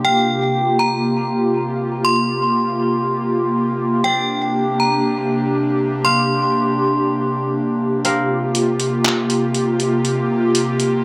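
An echo-heavy mix with light reverb carries this dreamy, blissful slice of atmospheric cloud-rap at 120 BPM in a half-time 4/4 feel, cut from a longer piece. A breathy, detuned pad with chorus holds sustained chords over C7sus4 and Bb69, while a fingerpicked kora adds crisp acoustic texture underneath and a bright, metallic FM bell with chorus and analog delay rings out the melody until 7.5 seconds. At 8.0 seconds a gritty, pitched-down trip hop sampler-style drum kit enters up front with handclaps and hi-hat as the harmony returns to C7sus4.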